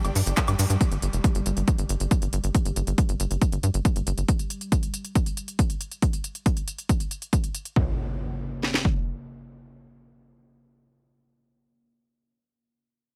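A heavy, overdriven kick and cracking snare drive this alien, psychedelic trance excerpt from 0.4 s, set up front in a dry, close mix. A tight, punchy sequencer bass with a fast-attack sawtooth pluck and a filter sweep drives underneath for the first few seconds. A second drum layer of smooth, tape-toned handclaps, hi-hat and woodblock runs alongside, while grainy maracas sit in the background at the start. A very quiet, morphing wavetable pad holds detuned, chorused chords, and a lush, distant bowed string ensemble with vibrato shimmers briefly behind it with sidechain pumping. At 7.8 s the harmony drops away and an electronic impact hits up front, ringing out to the end.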